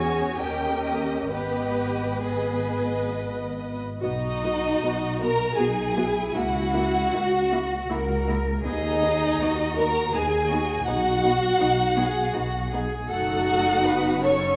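Solemn and yearning, this is a slow romantic movement for string orchestra in 3/4, moving with rubato between 63 and 83 BPM. It opens in G# minor and turns toward B major at 4.0 s, with chords passing through G#m, B, F#7/C# and a closing D#dim/F#, and it is cut from a longer piece. The first violins carry the melody up front, their rich, close tone colored by expressive vibrato, while the second violins add a lush second line marked by portamento. Beneath them the violas supply a smooth-topped accompaniment and the cellos hold an even, bowed bass part. The double basses sit distant and soft in attack at the bottom. All five sections play throughout, set in a scoring-stage reverb with a 1.7 s decay that lends the ensemble a spacious glow.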